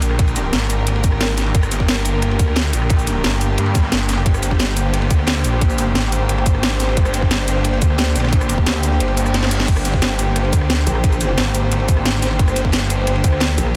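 A straight 4/4 groove at 177 BPM drives this dark, futuristic technical drum and bass fragment in G phrygian, built on a tight, overdriven electronic kick and an up-front electronic kit with a cracking snare and bright hats, while a gritty breakbeat kit with a high-tuned snare and dark ride sits in the background. A snarling, detuned saw bass growls with heavy distortion beneath bowed, intimate strings holding sustained Gm chords that pump against the kick. At 9.0 seconds the kick drops out for a drum fill and a very quiet reverse cymbal, and near 10.9 seconds a metallic FM wobble bass with chorus and tube saturation cuts through the dense, heavily limited mix.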